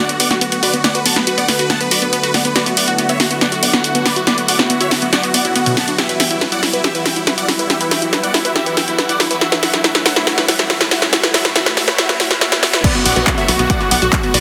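A straight 4/4 pulse at 140 BPM drives this emotional, bittersweet uplifting trance passage in B minor, where a punchy, tape-warm analog drum machine with crash, claps, hats and snare builds through a fill over a tight, dark sawtooth sequencer bass. A huge, euphoric supersaw lead carries the melody with phaser and delay, over a lush, airy pad with chorus and 12-bit sampler grit and a bright unison pluck playing arpeggios through cassette tape and tape echo, all of these pumping to the sidechain. A very quiet riser and downlifter enters at 8.5 seconds, and at the drop at 12.8 seconds a layered, up-front electronic kick and a catchy, square-wave plucky unison lead with vibrato join, the whole bathed in a huge ambient reverb and a dense, heavily limited master.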